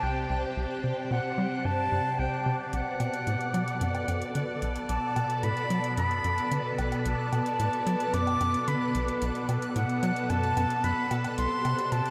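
A bright, reedy silver concert flute carries the melody up front with vibrato and a crisp attack, drifting through shimmer reverb and analog delay over a swirling, vintage phased string machine holding sustained chords, while a tight, punchy sequencer bass drives a saturated sawtooth riff with a filter sweep. This luminous, expansive piece of ambient, sequencer-driven space music moves at 111 BPM in a straight 4/4, with chords shifting from C5 to Bm7 and back. A pulsing, tempo-synced detuned texture sits in the background, electronic hi-hat and woodblock with metallic, tape-tinged hats enter at 2.7 seconds, and the whole dreamy mix is soaked in a huge reverb.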